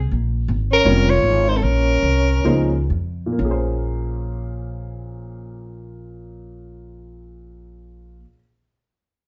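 An upright bass opens this cool, intense swung jazz excerpt in Bb minor, its woody, dark pizzicato up front as the tempo slows within a 118-168 BPM range, joined at 0.7 seconds by a bright, close-miked soprano saxophone singing the melody with vibrato over a breathy, whispered alto saxophone second line, both ending at 2.9 seconds, while a natural-sounding baby grand piano comps until 8.4 seconds in a live room with wet reverb.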